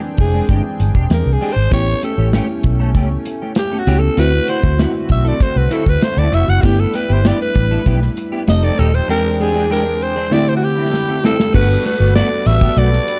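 A bell-like electric piano, a shimmering pulse-width pad in the background and a clean semi-hollow guitar riff open this breezy, urban 1980s jazz-funk pop fragment in G major at 98 BPM, joined at 0.2 seconds by a round, foam-muted bass held up front and a smooth, dark-toned studio kit. A raspy, gritty alto saxophone solos over chords moving from E7alt through A7, D9 and G6, with vibrato and scooped notes. A drum fill at 10.9 seconds leads into a Gmaj9 as the section changes, all in a dry, dark and polished production.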